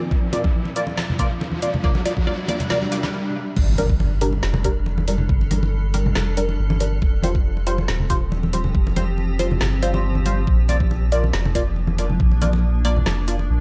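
A half-time 4/4 groove sets the pace for this meditative, dark deep dubstep excerpt, cut from a longer piece. An overdriven, knocking electronic kick sits up front, with a layered garage kit of woody snare, metallic hats and crash cymbal, all high-pass filtered and overdriven, while low-tuned congas with a thick skin and soft hands sit in the background. Above them, a muted, nasal, detuned sawtooth chord stab with a moving notch, phaser, 12-bit sampler grit and dub echo plucks and decays over a cloudy, evolving granular pad that blurs into its own reverb. An electronic riser climbs through the build-up and stops at 3.1 seconds for a brief break, and at 3.6 seconds an impact marks the drop. There, a deep, round, soft sub bass enters up front beneath chords moving from Gm to Fsus2 to Bb. Vinyl crackle, light reverb and digital ambience give the whole mix a dusty, spacious sheen.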